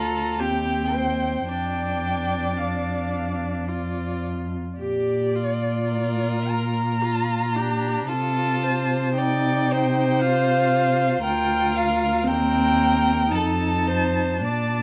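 An up-front, dark cello anchors this tender, slow romantic movement for string quartet, its vibrato and portamento giving the bass line an expressive voice beneath the first violin's melody, which shares that sliding, soft-attacked quality. A more distant second violin adds an even, smooth line, while the viola fills in rich, focused accompaniment, and all four players sound throughout in a large studio's moderate reverb. Flexible rubato in triple time and a closing move from Cm/Eb to F7 shape this passage, which is cut from a longer piece.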